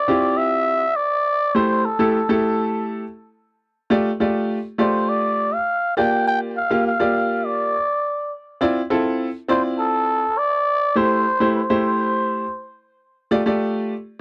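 Feel-good and danceable, this funk excerpt in a straight 4/4 sets a cup-muted trumpet on a mellow, veiled solo line with light vibrato and a breathy, growling edge, playing from the opening until 12.7 seconds. A clear baby grand piano supplies accompaniment with short, natural sustain through chords such as Dm9, A7(no3), F69 and Bb6, carrying on alone until 13.9 seconds. Both parts sit up front in a dry, close 1970s-style studio sound touched by light reverb.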